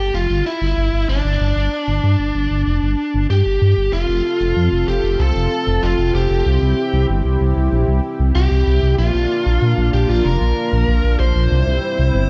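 Dark production with light reverb frames this moody, cinematic synthwave cut, where an up-front, overdriven electric lead guitar carries the melody through delay over a deep, rumbling detuned sawtooth bass, joined at 3.9 s by a shimmering, chorused pulse-width pad holding mellow sustained chords.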